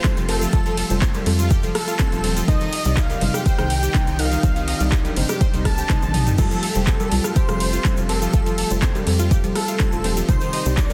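A dense, heavily limited modern master with little reverb carries this hopeful, expansive progressive house excerpt in F mixolydian at 123 BPM, moving between Fadd9 and Cm chords. An overdriven, up-front electronic kick and an overdriven deep house kit with metallic hats drive the groove, joined by a grainy egg shaker in the background, distant cowbell and congas from 0.3 seconds, and a tight, punchy sawtooth sequencer bass with tube saturation and sidechain pumping from 0.2 seconds, while a brief drum fill lands at 6.0 seconds. Above them a thick, nasal unison lead with vibrato and delay carries the melody over a very quiet airy second lead, a lush supersaw pad with phaser, a round, detuned analog pluck arpeggio with chorus, tape colour and delay, and soft, full-bodied chord stabs that pump beneath the mix.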